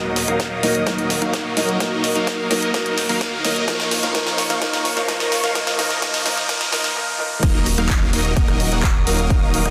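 This dense, heavily limited festival progressive house excerpt sits in a lush hall reverb, with a powerful, emotional mood over a straight pulse. It opens in a build-up led by a drum fill from the big-room kit, with a huge up-front snare, handclaps, hi-hats, rim clicks and crash cymbals, while a very quiet electronic riser and swell and a filter sweep on the supersaw chords push toward the drop at 7.4 s. The supersaw riff is bright, full-bodied and detuned, coloured by phaser, cassette tape saturation, a low-pass filter and delay, and it pumps against the punchy, layered electronic kick along with the other melodic parts. Beneath it, a thick, saturated detuned saw bass with chorus holds the low end. A dark, mellow baby grand piano with audible action noise and short sustain adds intimate accompaniment through delay until 7.5 s, while a muted, veiled string section, bowed con sordino with vibrato, sustains distant chords in the background.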